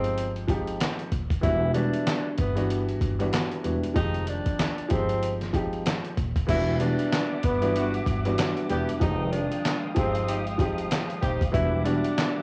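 Gritty and reflective, this boom-bap hip-hop excerpt moves at 95 BPM with a swung 16th-note feel. A pitched-down, compressed sampler-style drum kit sits up front with a thumpy kick, medium-tuned snare, hi-hat, handclaps and crash, joined by a woody pizzicato upright bass and a smooth, vintage grand piano over Fm9 and Em9 chords. A breathy, whispered tenor saxophone carries the intimate jazz melody through tape-worn delay and plate reverb, while a veiled, distant muted string section enters at 6.5 seconds and a horn section with light vibrato adds stabs from 7.8 seconds.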